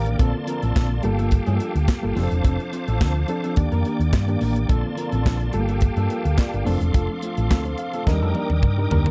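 Disco with a joyful, glamorous air, this cut from a longer piece rides a tight funk drum kit of handclaps, hi-hat, tight kick, medium-tuned snare and toms, sitting up front alongside a round, dark hollow-body electric bass that is fingered and amped. Over lush chords such as Bbmaj9, Gm9, Dm7 and Ebmaj7, a picked, compressed electric guitar at the edge of break-up and a worn, slightly out-of-tune reed electric piano, lightly overdriven through its built-in speakers, share the accompaniment, while a bright tonewheel organ holds sustained chords with key click, chorus vibrato and a fast rotary speaker. The electric piano adds fills at the opening and from 7.5 seconds, the drums fill from 8.1 seconds, and the whole is framed by light reverb in a dark, warm production.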